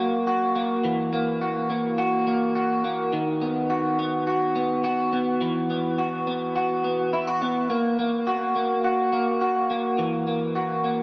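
A lone, picked electric guitar sits up front at the edge of break-up, compressed and lightly gritty through analog chorus and tape echo, drifting over F#, F#7, B/D#, Esus2 and F#/A# in F# mixolydian at 105 BPM in this floating, blissful dream pop fragment, its 11-second span bathed in a huge, wet ambient reverb with a small-speaker character.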